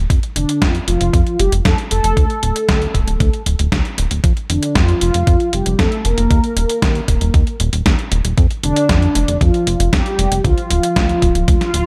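A chorused synth bass with a glossy, nasal pulse-wave tone opens this playful, danceable italo disco excerpt, joined at once by a thumpy electronic kick and a detuned 8-bit drum machine's hi-hat and snare in gated reverb, while a round, dark, brassy synth lead with tape echo carries the melody over chords moving from F6 to Dm before a brief electronic swell arrives at 11.6 seconds.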